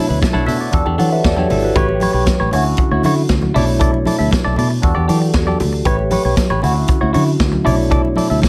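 A barky, lightly overdriven tine electric piano with phaser accompanies this driving, danceable disco excerpt in B minor at 117 BPM, cycling through Bm11, Em11, A9 and Dmaj9 alongside a clean, twangy, compressed electric guitar, a dark, round fingered bass, an up-front vintage drum kit with a punchy kick and rolled-off top, and soft-handed, ringing congas in the background, all set in a small room with light reverb.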